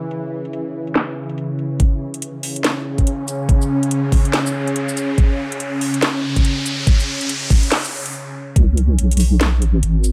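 A swung, half-time 142 BPM groove in 4/4 drives this meditative, cavernous deep dubstep excerpt in C# minor, where a bright, detuned string-like drone with phaser and vibrato holds a C#m chord over a tape-warm garage kit of cracking snare and metallic hats, a knocking electronic kick joins at 1.8 seconds for the build-up, an electronic riser enters at 3.2 seconds, and after a brief break a deep, dark, compressed wobble bass with chorus lands on the drop at 8.6 seconds.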